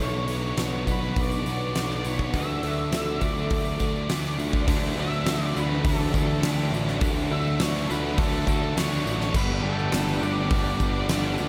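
Shoegaze-leaning dream pop rock, dreamy and hazy at a straight, mid-paced stride, cut from a longer piece and moving through Bmadd9, Dadd9 and Gadd9 chords. An up-front, overdriven fuzz bass and a huge arena drum kit with a fat snare, punchy kick and bright cymbals anchor a biting overdriven guitar riff, a very quiet twangy clean guitar and a faint jingly tambourine. An octave-fuzz lead guitar carries the melody through tape echo while a dark, detuned analog pad with ring modulation and chorus sustains chords until 4.7 seconds, when a double-tracked second overdriven guitar joins in the background, all under light reverb.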